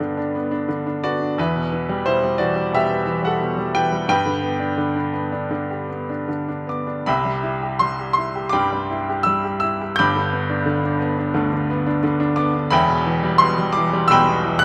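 Close, detailed miking with light reverb captures a bright baby grand piano, brilliant and intimate with audible action noise and long sustain, playing a sunny, hopeful classical solo in G major at a rubato 75-90 BPM in 4/4, its lyrical line spanning E1 to G6 over chords moving from Gmaj7 through Em, G and Cmaj7, back to G and then on to Em in a 14.6-second excerpt cut from a longer piece.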